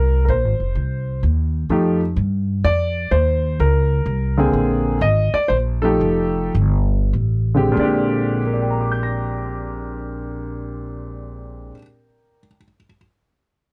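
A swung waltz in 3/4 moves between 89 and 127 BPM and slows from 4.5 to 7.8 seconds in this sophisticated jazz piano trio passage in Bb mixolydian, cut from a longer piece. A warm concert grand piano carries the melody up front with an intimate, natural tone, deep bass and audible action noise over chords such as Bbsus2, F9 and Bb13. A woody pizzicato upright bass with steel strings sits close beside it until 11.7 seconds, leaving the piano alone to the end, all captured in a dry, close 1970s-style studio sound.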